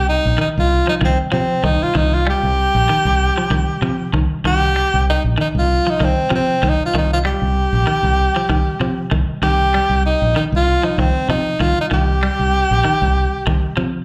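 A bright, up-front tenor saxophone and a dark, round fingered electric bass open this hypnotic, driving afrobeat piece together, cut from a longer performance. It moves at 96 BPM in 4/4 with a light 16th-note swing, sitting on a single C minor chord throughout. The saxophone carries the melody in a pop-style solo voice with vibrato, its sound dressed in plate reverb and slapback echo. Beneath it the bass is direct and amped, foam-muted and placed up front, anchoring the low end. From 0.4 seconds a clean, picked electric guitar joins with arpeggios, its scooped, bright tone shimmering through analog chorus along with plate reverb and slapback echo. The whole groove sounds like a live gig heard through a venue's PA, wrapped in a moderate club ambience.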